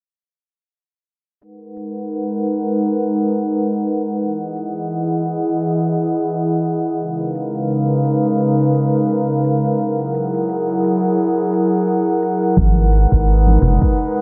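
At 1.4 s an airy, breathy pad with chorus drifts through mellow G# minor chords beneath a filter sweep and a very quiet, overdriven shaker in this relaxed sunset chillout excerpt at 86 BPM with a swung 16th feel, until at 12.6 s a deep, overdriven electronic kick, a round, dark analog bass and distant congas arrive briefly before the pad and shaker stop at 14.2 s, all bathed in a moderate plate reverb.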